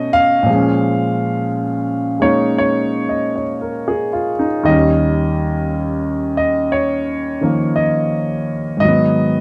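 The sound is dry and close, like a 1970s-style studio recording, with a light touch of reverb and the piano's action noise audible beneath the notes. This is a brief cut from a longer piece of solo jazz, played on a single grand piano with a natural, intimate tone set up front in the mix. The mood is late-night and swinging, moving at 58 BPM in 4/4 with a swung eighth-note feel. The piano covers a span from Eb2 up to F5 and is tuned slightly high, with A4 at 441 Hz. Over about 9.4 seconds the harmony moves from Bbm7 at 0.5 seconds to Eb7 at 4.7 seconds and lands on Abm7 near the close.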